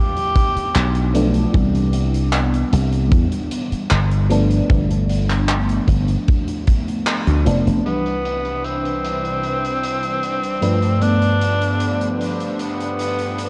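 A bright, vintage tenor saxophone with tape echo carries the melody in this nostalgic, woozy vaporwave excerpt at 76 BPM, floating over a lush FM electric piano with a soft pad layer swirling in phaser and chorus, a tight kick that plays until 6.8 seconds, a punchy, dry slap bass that runs until 7.8 seconds, a big-room rock kit with handclaps and muffled hi-hats, and, from 7.9 seconds, a distant, biting symphonic string section under a filter sweep, set in a dark cassette-tape production.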